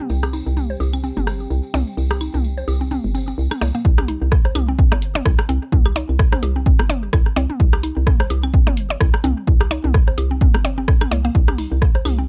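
A swung 4/4 groove at 128 BPM, with 56% swing on the sixteenths, drives this clinical, quirky minimal techno cut from a longer piece, tuned to A4 = 444 Hz and resting on C5. From the start, a minimal click kit of claves, percussion blips, rim click and toms runs through a tape-tinged echo, while a hollow, bouncy FM bass knocks up front between G1 and C2 and a woody, round mallet-like pluck sketches a riff from Bb3 to C5 through chorus and digital delay. For the opening 3.8 seconds, a deep, moody sawtooth pad with a slow attack and long release sits in the background with chorus and its own reverb, beside a jingly, bright acoustic tambourine, and both stop there. At 3.8 seconds the drop arrives with a punchy electronic kick placed up front, joined at 4.1 seconds by an analog drum machine adding hi-hat and rim click. The bass, pluck and pad all pump against the sidechain, and the overall sound is dry, with little reverb.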